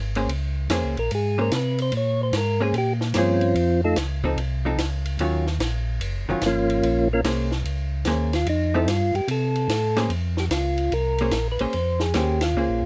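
This short cut from a longer soul jazz organ trio performance sounds close and detailed, with little reverb and a dry, intimate presence. At 147 BPM in 4/4 with a swung eighth-note feel, the bluesy, smoky groove sits in Bb dorian, moving through chords such as Bbm9, F7 and Ebm9. A mellow, round tonewheel organ carries the bass line from the very start, its slow rotary speaker, vibrato and audible key click giving the low end a soft, dark glow. A clean, picked hollow-body electric guitar supplies compressed, up-front accompaniment, while a compact cocktail drum kit adds dry, natural hi-hat, ride, snare and kick, with dark cymbals, a high-tuned snare and a tight kick. A second, percussive tonewheel organ with third harmonic percussion plays the melody at 1.0 seconds, drops out at 4.0 seconds and returns at 6.5 seconds, and the band lands a shared accent at 12.4 seconds.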